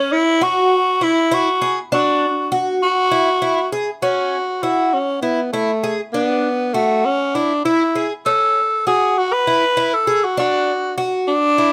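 In a lopsided 7/8 with a straight feel, this tense, driving fragment of a progressive instrumental piece pushes forward with restless energy. A picked twelve-string acoustic guitar carries the arpeggios throughout, its boxy, shimmering, octave-doubled tone marked by an audible finger squeak. Over it, a raspy tenor saxophone sings the melody up front, gritty and punchy, with scooped notes, a light vibrato and a smooth top end. The harmony swings between F#5 and Dadd9, and a second passage from 4.0 seconds briefly colors the cycle with F#m7 around 8.3 seconds. Close, detailed microphones and a touch of reverb keep both instruments intimate and present.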